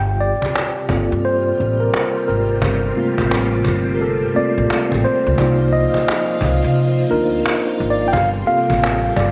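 Lightly reverberant, this late-night neo-soul R&B excerpt sits in G minor at 87 BPM in 4/4, swung on the sixteenths, and moves from Gm11 to Cm11 at 5.4 seconds before returning to Gm11 at 8.1 seconds. A mellow, clean tine electric piano sits up front, taking a soulful solo from its entry at 0.2 seconds. Beneath it, a swirling, vintage string machine holds sustained chords through ensemble chorus and phaser, while a dark pizzicato upright bass and a distant, woody cajon played with hard hands keep the groove.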